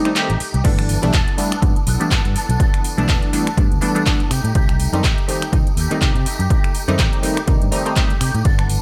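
A punchy, detuned sawtooth polysynth comp with chorus, phaser and a filtered, pumping edge opens this sunny, funky cut of filtered disco house at 123 BPM, alongside a clean, twangy electric guitar riff through an envelope filter, as metallic-hatted house drums, snaps, claps and a distant tambourine slip in over Cm6. A dark, round, tube-saturated fingered bass joins at 0.3 seconds, and at 0.6 seconds the up-front analog kick lands with the drop as the bass pumps beneath the swung 16th-note groove and the harmony moves to G69 and back to Cm6 at 4.3 seconds. Small room ambience on the kit and kick sits inside a broad digital ambience.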